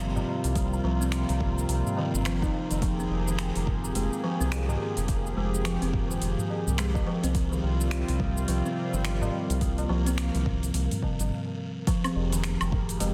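A buzzing kalimba carries this hypnotic, organic downtempo excerpt, its woody, fingertip-plucked arpeggios entering at 0.6 seconds, muted by a low-pass filter and trailed by digital delay. Beneath it, a round analog bass sits up front with a mellow, evolving tone and sidechain pumping, while a smooth sawtooth pad with chorus and its own sidechain pumping holds sustained chords moving between C7sus4 and Fm in F minor. The groove runs at 106 BPM in 4/4 with swung sixteenths, driven by a deep electronic kick and an afro-pop kit of finger snaps, metallic hi-hat, shaker and woodblock, with soft clipping on the snare. A high-tuned, dry tabla sits in the background, and an airy, wind-like noise texture breathes darkly behind the mix with its own reverb. A brief stop at 11.3 seconds precedes a return to Fm, all set in a lush hall ambience under a dense, heavily limited master.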